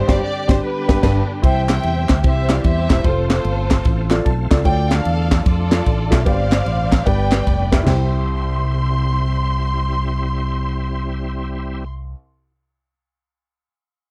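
A lush bowed string section carries the melody in this uplifting, jubilant uptempo gospel piece, its ensemble sound expressive with vibrato and portamento over a smooth top. Set at 149 BPM in 4/4 with a swung eighth-note feel in C major, it opens with a band accent over a Gsus4-to-G turnaround before settling into a C, F, Dm, Gsus4, G progression. A tight funk drum kit sits up front with a punchy kick, a high-tuned snare, crashes, ride and toms, while a round, punchy fingered electric bass anchors the low end. A dark, mellow grand piano with short sustain supplies accompaniment and steps forward with a fill at 4.0 seconds, and a bright, shouting tonewheel organ holds sustained chords in the background, colored by key click, chorus vibrato and a slow rotary speaker. Hollow, vintage-sounding group handclaps join from 1.7 seconds, and the drums drop out at 8.0 seconds as the final section lands on C. 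The dry, close 1970s-style studio sound carries little reverb, and this passage is cut from a longer piece.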